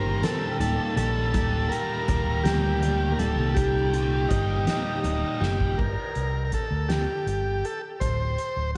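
A buzzy vintage combo organ carries the melody up front, its light vibrato trailing into a diffuse ambient delay, in this hypnotic, mysterious fragment of psychedelic rock. The music moves slowly at 54 BPM in 6/8, over chords that shift from Eb/D to Gm and then D7(no3). A dark, double-tracked overdriven electric guitar plays a picked riff through a flanger until 5.8 s, while a round, amped fingered electric bass holds down the low end throughout. A drum kit played with soft mallets brings a fat snare and punchy kick in a big room, with a drum fill at 5.4 s leading into the second section. Very quiet congas with damped, thin skins sit close and dry beneath it all. The mix is dreamy and soaked in a lush hall reverb, dusted with vinyl crackle and rolled off at the top.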